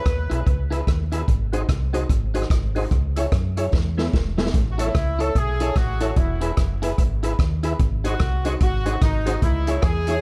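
Ska at 147 BPM in E major with a swung, upbeat and bouncy feel, cut from a longer piece, built on a punchy vintage drum kit with a rolled-off top and a dark, foam-muted dub bass sitting up front. A slightly broken-up, compressed electric guitar with analog delay and a mellow tonewheel organ, its percussive stabs carrying key click, chorus vibrato and fast rotary speaker, fill out the accompaniment over a small room ambience. A clear, loose horn section with light vibrato and analog delay carries the melody, sounding briefly at the start and returning at 4.7 seconds after a drum fill from 3.7 seconds.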